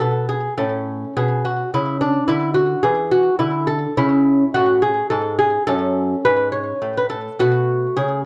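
A solo lute, fingerpicked on delicate, double gut strings with some octave-doubled strings and a touch of slapback echo, sits up front in a dry, close 1970s-style studio with small room ambience for this radiant, dance-like baroque-style classical dance in A major, moving in a rubato 12/8 at 70 BPM through an 8.3-second passage cut from a longer piece.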